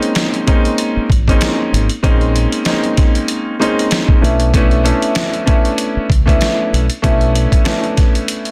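Tough yet reflective, this boom-bap hip-hop excerpt rides a 96 BPM groove in 4/4 with a light swing on the sixteenths. A sampler-style drum kit sits up front, compressed and pitched down, with a gritty edge, a thumpy kick, a medium-tuned snare and hi-hat, all carrying the character of being re-recorded in a large room. A smooth, vintage grand piano, also up front and bathed in plate reverb, supplies the accompaniment in a compact middle register, moving from Bbm11 to Bm11 at 4.2 seconds. A dark, round fingered electric bass with a direct, amped tone enters at 1.0 seconds and drops out at 7.5 seconds, anchoring the low end. The overall sound is dense and heavily limited in a modern style, with a light touch of reverb, and the passage is cut from a longer piece.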